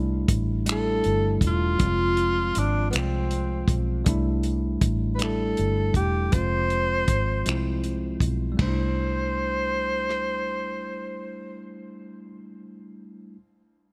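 Intimate and warm, this slow R&B piece in 6/8 moves at 53 BPM in C major, taken from a longer piece. A bell-like, bright tine electric piano sits forward with clean, direct chords alternating between C6/9 and F minor, while a vintage muted fingered electric bass adds a dark, round, foam-muted low end. A soul drum kit enters at 0.3 seconds, dry and muffled with a lo-fi, rolled-off top, dark cymbals and a tight kick, mixing finger snaps, hi-hat, ride cymbal and rim clicks. A breathy tenor saxophone carries the jazz-style solo melody from 0.7 seconds, placed up front with vibrato, scooped notes and a smooth yet punchy tone. Light reverb and small room ambience give the music a close feel; the piece moves into a brief new section at 8.6 seconds, and the drums drop away shortly after at 10.3 seconds.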